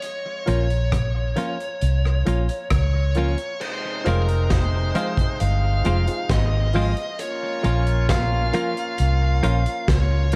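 A small, lightly reverberant room frames this hypnotic, laid-back roots reggae excerpt, built on a foam-muted, round electric bass sitting up front and a crunchy, saturated breakbeat kit with dark cymbals and a punchy kick. A distorted, bluesy lead guitar carries the melody through tape echo, while a clean, hollow-body electric guitar accompanies and a mellow grand piano, its action noise audible, adds stabs in the background. At 3.6 seconds a brilliant, tight trombone section with vibrato enters on a second line, also fed through tape echo, as the chords move from Bb minor to F minor and back.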